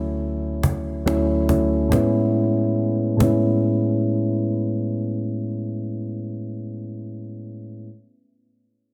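Contemporary R&B with a dreamy, smooth mood, this short excerpt is cut from a longer piece and moves at an unhurried pace in a straight four-four feel. Soft electric-piano-like synth keys carry the accompaniment throughout, sitting up front with a round, mellow tone shaped by chorus and a low-pass filter, and each note has a fast attack that decays gently. A filter sweep on the keys opens the passage over a Dmaj7 chord before the harmony settles onto Amaj7 at 1.9 seconds. A cajon enters at 0.6 seconds and plays until 3.4 seconds, adding a woody, acoustic pulse with faint snares. Light small-room reverb surrounds the whole recording, and the overall master is dense and heavily limited in a modern style.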